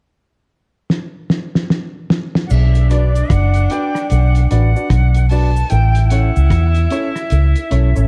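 This laid-back, serious roots reggae excerpt opens with a cloth-damped, thuddy drum kit playing a fill from 0.9 seconds, its fat snare, tight kick and muffled, dark cymbals sitting up front with a gritty, saturated, lo-fi character. At 2.5 seconds the groove settles over a Bm chord: a round, foam-muted fingered electric bass with a vintage, amped tone takes the loudest place in the mix. At the same moment a bright, airy, reedy jazz flute carries the melody with a crisp, chiffy attack and vibrato, while a tenor saxophone with light vibrato plays a low second line beneath it, both set back at a distance and trailed by tape echo. A concert grand piano with deep bass and long sustain adds smooth stabs from 2.9 seconds, and a close, dry cabasa ticks quietly in the background. The harmony moves to A at 5.7 seconds, and the whole track has a dark, warm production with little reverb, swinging sixteenths giving it a relaxed lilt.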